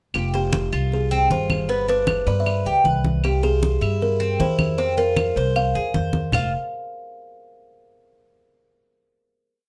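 A buzzing, ringing kalimba carries a hook-driven melody up front in this short, sultry and danceable Cuban son piece at 155 BPM in F harmonic minor, set over a picked, metallic tres guajeo, a thumpy gut-string upright bass tumbao that anticipates the chords, bright slapped and open congas and woody vintage claves, all moving from Fmadd9 through G and C7 to Fm in moderate studio reverb before settling on a final F5 chord at 6.3 seconds.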